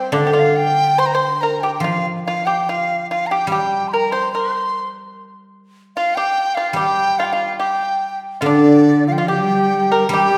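A wet recital-hall reverb of about 1.7 seconds surrounds this graceful, tender excerpt of Chinese traditional chamber music, cut from a longer piece and moving at 72 BPM in 2/4 with a rubato feel in G yu mode. Up front, a large bamboo dizi carries the melody with a buzzing membrane, an airy, expressive tongued tone and vibrato, while a dry, percussive pipa plays a second line and a silvery, ringing guzheng accompanies in a low register. At 8.4 seconds a breathy, bright end-blown xiao joins with a straight, reedy tone and soft attack, alongside a rich, focused bowed cello, both adding second lines until the close at 10.4 seconds.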